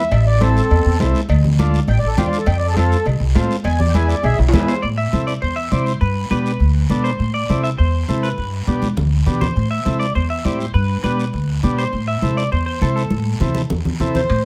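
Danceable and driving, this cumbia excerpt moves at 203 BPM in a straight 4/4. It opens with a reedy, sweet accordion solo, shimmering with light tremolo tuning and plate reverb, over a buzzy vintage combo organ, a woody upright bass up front, bright thin-skinned congas, raspy guiro and ringing metal-shell cowbell and timbales. The accordion steps back at 4.4 s, and around 4.8 s the music settles into A minor as a clean, picked semi-hollow electric guitar with analog chorus takes a solo over Am and G chords, punctuated by drum fills, before the accordion returns briefly at 14.2 s.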